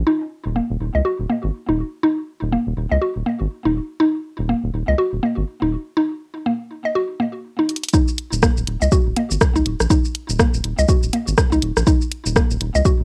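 A woody, round mallet-like synth pluck carries the riff in this clinical, cool minimal techno excerpt, its percussive FM tone thickened by chorus, sidechain pumping, cassette tape coloring and tape echo, with a filter sweep running across its arpeggio through the opening stretch. Beneath it, a rubbery, hollow square-wave bass bounces through the low register with a dark, resonant filter pluck, also pumping against the sidechain. The groove sits at 122 BPM in 4/4 with a swung 16th feel, anchored in Eb minor on an Eb chord. A drum fill at 7.7 seconds brings in a layered, produced garage kit of hi-hat, rim click and shaker. The drop lands at 7.9 seconds with a punchy analog kick, tape-colored and re-recorded in a small room, sitting most forward in the mix. The whole piece has the light reverb and lo-fi character of a home cassette recording, cut from a longer track.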